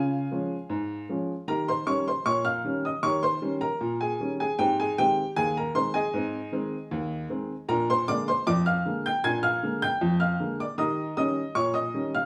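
Set in a straight 2/4 at 77 BPM, this cheerful, lively ragtime piano excerpt in Ab major features a solo upright piano, woody and boxy with short sustain and placed up front, ranging from Eb2 to Ab6 over chords moving from Db through Eb7, Ab and Bb7 back to Eb7, all heard in a studio room with moderate reverb across its 12.3 seconds.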